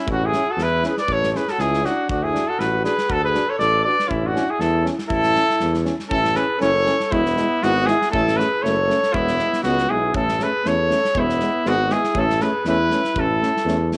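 A clear, roomy trumpet leads up front in this festive, virtuosic Balkan brass band excerpt at 119 BPM in A major, with a punchy, close-miked alto saxophone carrying a vibrato-laden second line, a tube-saturated tuba with a smooth top anchoring the bass, trombone and warm euphonium accompanying in the background, and a loose acoustic drum kit with a tight kick and pumping small-room sound, all under a moderate spring reverb as the piece moves into a new section at 6.1 seconds.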